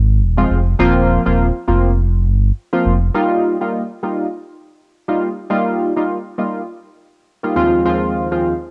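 The recording has the soft, homemade grain of cassette tape and a light reverb, and it is a short cut from a longer afrobeats piece in Eb major at 102 BPM, in 4/4 with a 16th-note swing of 58%. The mood is joyful and romantic. A deep, full sine sub bass with an added octave sits up front, sustained and quick to speak, holding the low end from the opening until 3.1 seconds. Analog keys enter at 0.4 seconds, round and evolving, blending pulse and sawtooth waves into a detuned, decaying tone shaped by a filter sweep, with chorus and a tape-worn character. The harmony moves from Fm over Eb to Bbsus2 over Eb, then settles on Ebadd9 as the keys carry on alone into the second section, returning to Fm over Eb at 7.6 seconds before the cut ends.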